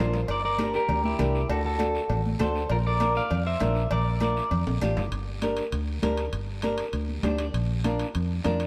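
Heard from further back in a room with a moderate plate reverb, this driving, passionate cumbia excerpt moves at 198 BPM in G dorian over Gm, D7 and Bb chords. A dark, scooped, clean electric guitar carries the melody up front with spring reverb and slapback echo until 4.6 seconds, while a fingerpicked flamenco guitar holds the accompaniment over a round, foam-muted fingered electric bass. Raspy guiro, ringing metal-shell timbales and cowbell, and damped, high-tuned congas in the background drive the groove, with a drum fill at 4.7 seconds leading into a new section and a short nylon-string guitar fill at 7.1 seconds.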